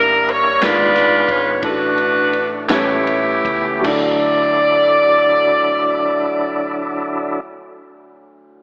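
Heard through a lo-fi AM-radio filter with light reverb and small-room ambience, this brief cut from a longer slow gospel piece in 6/8 and D major moves at about 50-62 BPM and slows down over its first 3.8 seconds, as a close-miked, clear saxophone section carries the jubilant, uplifting melody with light vibrato over a dark, woody upright piano, a thick tonewheel organ with key click, overdrive and fast rotary speaker, and a round, hollow-body electric bass in the background, while an airy big-band drum kit with punchy kick and a distant, crisp group handclap join briefly from 0.3 and 0.6 seconds, ending on a Dadd9 chord.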